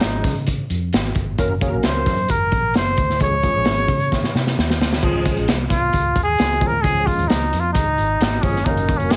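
Heavily compressed into a radio-like sound with light reverb, this joyful fragment of uptempo 1960s-style soul puts a breathy, mellow trumpet melody with vibrato and scooped notes up front over a bright, barky tine electric piano with ensemble chorus, a round, foam-muted vintage fingered electric bass and a gritty, saturated breakbeat drum kit with dark cymbals, whose fill at 4.1 seconds leads into a trumpet solo from 5.0 seconds.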